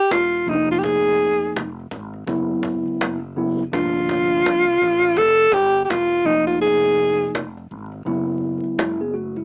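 Swung sixteenths at 83 BPM drive this mellow, smoky jazz-hop excerpt, where a breathy, close-miked alto saxophone carries a vibrato-laden subtone melody until 7.3 seconds over a woody, soft-handed cajon, a dark, round fretless bass with tube saturation, and a clean tine electric piano moving through Fm7, F#7sus4 and Gm11, the mix wrapped in light reverb, gritty transformer saturation, vinyl crackle and an AM radio tone, with a break arriving at 6.6 seconds.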